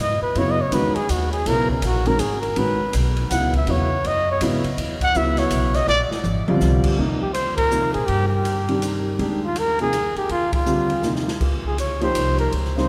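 A swung 3/4 pulse at 163 BPM drives this hypnotic, open modal jazz excerpt, with the eighth notes lightly lilting. A breathy, whispered trumpet carries the melody with vibrato and a soft attack, close-miked and intimate at the front, playing a solo passage through the first 7.0 seconds. A woody pizzicato upright bass on steel strings sounds from the start, and the grand piano and the drum kit join at 0.4 seconds: the piano is mellow, vintage and long-sustaining, and the airy, polished kit has dusky cymbals, a medium-tuned snare and a boomy kick. The harmony drifts through lush major-ninth and thirteenth chords before settling into Eb mixolydian at 7.0 seconds for the second section, where band accents punctuate the groove. The drums add short fills just before that shift and again near the end. A cathedral-like reverb with a long five-second tail bathes the ensemble in the resonance of a church or concert hall.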